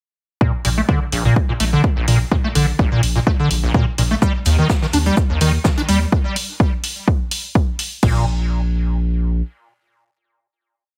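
Acid house at 126 BPM in Bb major, playful and raw, built on an up-front, overdriven four-on-the-floor electronic kick, a punchy analog drum machine with open hats and crash, and a deep, saturated sine sub bass on the off-beats, pumping with the sidechain. A squelchy, hollow square-wave acid line with a resonant filter sweep and accents runs a 7-step loop that drifts against the bar, colored by overdrive, chorus, cassette tape and delay, while a fat-snared acoustic breakbeat with edits, sounding in a small room, slips in from 4.2 to 6.0 s. The mix has a heavily compressed radio sound in moderate reverb, with the groove giving way at 8.0 s to a final note held to 11.0 s.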